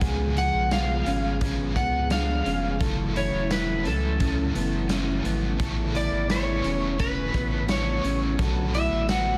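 Dreamy and floating, this short dream pop fragment drifts along at 86 BPM in a straight 4/4, moving through C#7, F#m7, Amaj9 and Bm7 in A major. A slightly broken-up electric slide guitar carries the melody from 0.4 seconds, its warm line trailed by tape echo. Beneath it, a dark, clean fingered electric guitar plays compressed arpeggios through analog chorus and tape echo, while a bright, double-tracked overdriven guitar adds crunchy picked accompaniment colored by harmonic tremolo and lush chorus. A soft, flute-like tonewheel organ holds sustained chords with audible key click and a slow rotary speaker, and a round sine sub bass sits deep and up front. A raw garage drum kit with a punchy kick, medium-tuned snare, hi-hat and tambourine sounds gritty and saturated with a rolled-off top in a bright stone room, all set in light reverb within a dense, heavily limited modern master.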